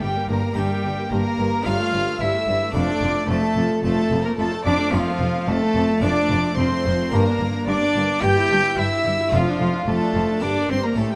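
A rich, reedy solo cello sits up front carrying the melody through this stormy, driving baroque-style concerto excerpt in D minor at 110 BPM, joined by a warm gut-string violin section also playing melody high above, a second violin line, a dark, distant viola section and an airy, brilliant harpsichord in the background, while the double bass and cello sections anchor the bass, all in a moderate recital hall reverb over chords moving from Gm through Edim/G, A7/G and Dm/F.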